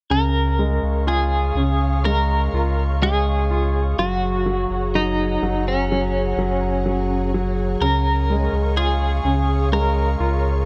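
A bright, clean twelve-string electric guitar carries the melody up front, its picked notes shimmering with tremolo and held in a compressed, even tone. This is a hopeful, tender pop fragment cut from a longer piece, moving at a slow 63 BPM in straight 4/4 in Db major, with tuning set to A4 = 436 Hz. A clear concert grand piano supports it with polished accompaniment of short sustain and deep bass, while a full sine-based sub bass with an added octave sits up front and anchors the low end. From 0.7 seconds an ethereal, airy pad enters with slow-attack sustained chords high above, its detuned sawtooth and triangle layers, noise, ensemble chorus and built-in reverb giving it a hazy glow. The harmony moves from Db to Gbadd9 at 4.0 seconds and back to Db at 7.8 seconds, and the overall production is dark, warm and dry, with little room sound around the parts.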